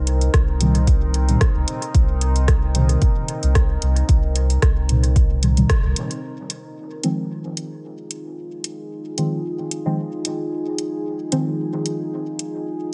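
This meditative, hazy dub techno excerpt opens on a mellow, detuned chord stab with a warbling, 12-bit sampler grit, colored by chorus and phaser and trailed by dub echo, over a dark ambient pad whose slow-attack sawtooth voices sit in chorus and their own reverb. A round, soft sub bass and an up-front layered kick anchor the first half, with both the bass and the two synth parts ducking to sidechain pumping. An analog rhythm box adds metallic hats and rim clicks with a lightly swung sixteenth-note feel, its hits echoing into the haze. The band hits an accent at 5.7 seconds, after which the kick and sub bass drop away and the harmony shifts from a Cm7 to an Fm7 at 6.2 seconds. From there a filter sweep moves over the chord stab while the pad and rhythm box carry on, all set in light reverb with a soft, rolled-off top.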